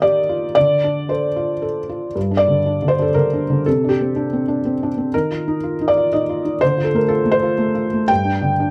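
A felt-muted upright piano plays alone, its soft, mellow tone set close and up front with the faint clatter of its action clearly audible. This brief fragment of a longer neoclassical minimalist piece moves in a rubato 3/4 at around 121 BPM in G minor, tuned to A4 = 439 Hz. The piano spans G2 to G5, first passing from Ebadd9 to Dm7 before a new section begins at 2.2 s on Gm. From there the harmony drifts through Csus2, Ebsus2 and Dm7, settling on an open G5 at 8.1 s. The dry, detailed sound keeps the mood intimate and wistful, as if the listener were seated beside the instrument.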